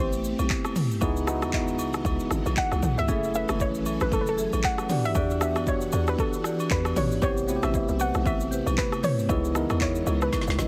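This hypnotic, late-night amapiano excerpt opens with a soft, round pluck carrying the melody through chorus and delay, set over a clean tine electric piano and a vintage string machine of violas whose sawtooth chords breathe with sidechain pumping and a moving notch. Underneath, a hollow log drum bass gives a bouncy, percussive low end with a fast attack and noisy edge, while a layered deep house kit sits up front with a deep kick, woody snare, dark hats, handclaps, rim clicks, shaker and toms, swung on the sixteenths. Close acoustic agogo bells and woodblock, with maracas and group handclaps, tick along in the background from 0.4 seconds. A marimba played with medium mallets adds delayed stabs from 3.1 seconds, tucked behind the other parts. The harmony drifts through minor ninth chords, and a drum fill at 10.3 seconds closes the passage. The mix has light reverb and a heavily compressed, radio-like sheen.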